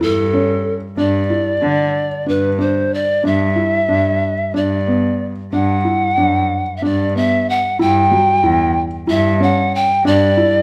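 Restless and shimmering, this short contemporary chamber piece moves in an uneven 7/8 at 186 eighth-note beats per minute with a straight feel, centred in G major and tuned slightly below standard pitch at A4 = 439 Hz. A breathy bamboo pan flute carries the melody up front from the first moment, its soft attack, chiff and unsteady vibrato giving the line a human, wavering quality with rolled-off highs. Beneath it, a felt-muted upright piano plays arpeggios in a dark, intimate register, the thick felt softening each note while the action noise of the instrument stays audible. A single cello holds the bass, also up front, with a nasal, reedy gut-string tone, an airy bow and a period-style, boxy character. The harmony drifts from A7 through G, Bm and Em6 before returning to G, and a moderate recital hall reverb lends the ensemble a natural sense of space throughout this cut from a longer piece.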